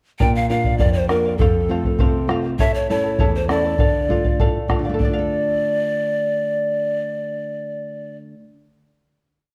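A melancholic, wistful Andean folk piece in D minor opens at 0.2 seconds with all four parts together: breathy large pan pipes carrying the melody, a charango, a nylon-string guitar and a bombo, moving at 100 BPM in a straight 2/4. The cane pipes sit up front with a soft attack and audible chiff, singing short song-like motifs in a straight tone over chords of Bb, F, A and Dm. Beneath them the charango shimmers with its double strings, fingerpicked and strummed in open chord shapes, while the full-bodied guitar plays an oompah of bass notes and chord figures, its finger squeak audible. The bombo's deep, band-limited, vintage thump repeats a steady pattern until 5.3 seconds, just after the piece settles onto a final chord at 5.0 seconds. The pipes end at 8.2 seconds, and the strings ring on until 8.7 seconds in a dark production bathed in wet recital hall reverb.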